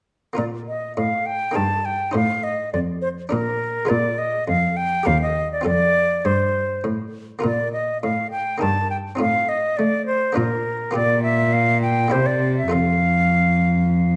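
A moderate recital-hall reverb frames this radiant, dance-like baroque-style sonata excerpt in 3/4 at 102 BPM, opening in B-flat major and moving to F major at 11.0 s. An airy concert flute carries the melody up front with a straight tone and soft attack, while a single bowed cello sits close beneath it, singing the bass with vibrato, portamento and an expressive, warm voice. A buff-stop harpsichord in Flemish style fills in the continuo with muted, lute-like plucked chords that sound dry and set a little behind the other two.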